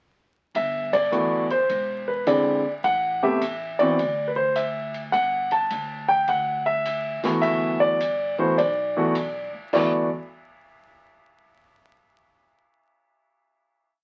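This short jazz piano trio piece in G major swings at 104 BPM in 4/4, with a warm mood. The baby grand piano sits up front and carries a motif-based melody in sentence-like phrases, adding syncopated comping in drop-2 voicings. Beneath it, a woody pizzicato upright bass on steel strings plays in two, while a compact cocktail kit keeps a stick pattern on dark ride cymbals, with a high-tuned snare, punchy kick, hi-hat and crash. The band hits an accent together at 0.8 seconds. The harmony moves through Gmaj13, E7b13, Amadd9 and a rootless Cadd9/D before returning to Gmaj13, and a final chord rings from 9.7 seconds. Moderate studio reverb gives the trio a natural room, and the sound carries the crackle of a very old 78 rpm record.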